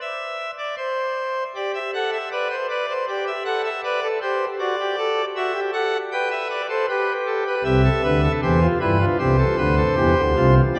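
A lone pipe organ on a cornet stop opens this baroque-style three-part fugue, its nasal, up-front solo voice sounding into a cathedral whose 6.2-second reverb hangs long after each note. The mood is stately and joyful, moving at 78 BPM in a straight 4/4. The line begins unharmonized before the chords arrive at 1.5 seconds with Am7/G, then pass through D/F#, G and Dm7/C. The cornet has a romantic voicing and reaches from B1 up to G5. The passage runs 10.8 seconds, a fragment lifted from a longer piece.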